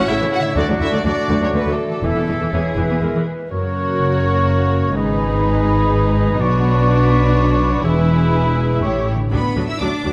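Cinematic and triumphant, this heroic 124 BPM passage in 3/4, cut from a longer piece, sets a lush violin section's focused, vibrato-rich melody over background violins, distant viola, rich cellos and double basses, with a clear oboe, hollow flute ensemble and, from 2.5 s, a background clarinet adding lines, while mellow French horns hold very quiet chords, warm trumpets punch stabs and a ringing concert harp arpeggiates, all within a wet scoring-stage reverb as the harmony moves from A through G#m and Bmadd9 to close on D6.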